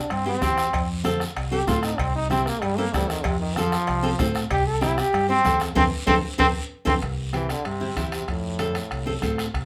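Festive and danceable, this short cumbia cut has a live band feel, as if the players share one small room with a touch of wet reverb. A bright, punchy trombone sits up front and plays a solo with pop-style vibrato over the first 7.0 seconds. A fingerpicked nylon-string guitar adds full-bodied, classical-toned accompaniment, finger squeaks and all, while a round, dark fingered electric bass anchors the low end. The percussion blends a soft-beater bombo, a raspy guiro, thin-skinned low-tuned congas and ringing metal-shell cowbell and timbales, with the congas, cowbell and timbales kept close and dry in the background. Near the end of the solo the band hits an accent from 5.8 seconds, and a drum fill leads into a new section that rides the same simple two-chord sway to the close.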